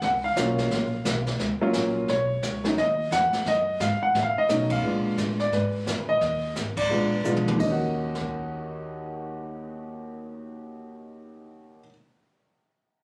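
Captured on a phone in a club with moderate reverb and compression, this cut from a longer cool, swinging jazz piano trio piece moves at 174 BPM in Eb minor, with an intimate, up-front grand piano carrying the melody amid audible action noise, a woody pizzicato upright bass on steel strings, and a distant, roomy brush kit with dark cymbals and a boomy kick that plays a fill at 7.2 seconds and drops out at 8.3 seconds, as band accents punctuate the opening section before a new section begins at 7.6 seconds.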